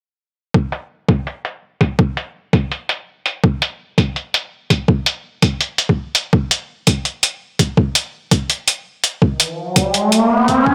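A thumpy, pitched-down electronic kick drum sits up front from 0.5 seconds in this half-time drum and bass cut from a longer piece, running at 166 BPM in 4/4 with a 59% swing on the sixteenths and a high-pass filter shaping its low end. Compressed, gritty sampler-style hi-hats join at 0.7 seconds, darkened by a low-pass filter and carrying a tape-warm tone, while a lush hall reverb lends the spare groove a spacious yet tense atmosphere. An electronic riser enters up front at 9.5 seconds and carries through to the close.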